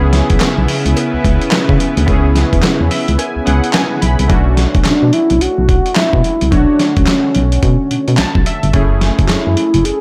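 A punchy, bouncy new jack swing groove opens at once, with warm analog keys playing a chorused, detuned sawtooth accompaniment over a round, dark FM bass that sits up front with a fast, decaying attack, while a lush unison pad holds thick sustained chords in the background until 4.3 seconds. The dusty, sampler-style drum kit brings a thumpy kick, a medium-tuned snare, hi-hat and handclaps, gritty with overdrive and gated reverb and sounding re-recorded in a small room, and a very quiet metallic cowbell ticks along early on. At 108 BPM with a 16th-note swing in 4/4, the harmony moves from C#m7 to Bm9 and then F#m9, and the keys add fills with an airy, warbling vintage character and a filter sweep. At 4.9 seconds a mellow, horn-like synth lead enters with a soft attack, vibrato and chorus, carrying the melody in a narrow middle range. Light reverb ties the mix together in this R&B fragment cut from a longer piece.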